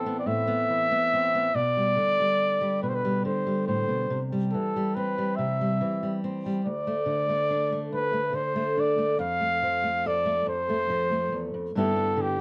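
Wistful and melancholic, this short folk excerpt moves in a slow 6/8 at 47 BPM, counted in dotted quarters, with a straight feel in D dorian. A dark trumpet carries the melody from start to finish, played in a classical style with light vibrato, sitting up front as the solo voice between G4 and F5. Beneath it, a fingerpicked steel-string acoustic guitar with a dusky auditorium body supplies the accompaniment across the full 12.4 seconds, reaching from D2 up to A4 and also placed up front. The harmony drifts through Amadd9, G/B, C, D5 and F before touching G6 near 11.8 seconds, and the passage is cut from a longer piece. A moderate studio reverb gives the pair a modest sense of space, and the top end is gently rolled off above 10.7 kHz.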